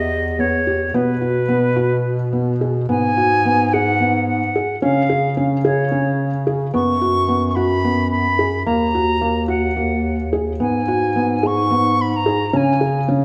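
A lush concert-hall reverb surrounds this restless yet hopeful excerpt of contemporary chamber music in 7/8 at 218 eighth-note beats per minute, where a pure silver concert flute with crisp attacks and vibrato sings the melody over dark, intimate arpeggios from a felt-muted upright piano whose action noise is audible, while a breathy bass clarinet anchors the bass with jazz-style subtone and scooped notes as the harmony moves from Em through B5 into G#m7 at 2.9 seconds.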